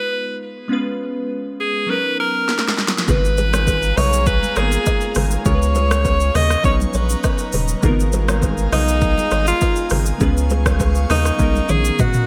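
A straight 4/4 afrobeats groove at 101 BPM in G# dorian sets a smooth, mellow mood, as a bright, punchy alto saxophone with delay carries the melody over glassy, detuned digital keys from the start, an electronic afro-pop drum kit with a deep kick, sharp snare and gated reverb enters with a fill at 2.5 seconds, and a thick, saturated sub bass, very quiet woody kalimba and congas join at 3.1 seconds, with an airy, breathy pad adding sustained chords from 3.3 seconds, all set in a moderate plate reverb with bright 1980s-style digital production.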